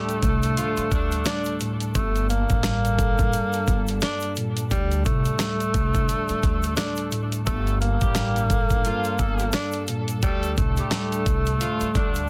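Tough and moody, this swung boom-bap hip-hop excerpt rides a gritty, compressed sampler-style drum kit with a thumpy kick, a woody pizzicato upright bass and a grainy shaker in the background, beneath a mellow tine electric piano tinted by cassette tape. An up-front breathy tenor saxophone carries the jazz-style melody with vibrato, scooped notes and digital delay, while a smooth, bowed sul tasto string section holds sustained chords behind it and a vintage horn section adds clear stabs from the start to 1.4 seconds and again from 7.4 seconds. The dense, heavily limited mix stays dry and close as it alternates between Dsus4 and Gmadd9.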